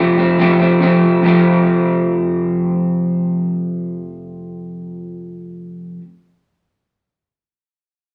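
In a straight 4/4 at 69 BPM that slows over the first 1.2 seconds, this cathartic, bittersweet rock fragment in F major is carried by an up-front electric guitar through a small old amp, its dark, slightly broken-up picked arpeggios ranging from F2 to C4 for the full 6.0 seconds inside a moderate large-studio reverb that gives the sense of a band playing live in one room.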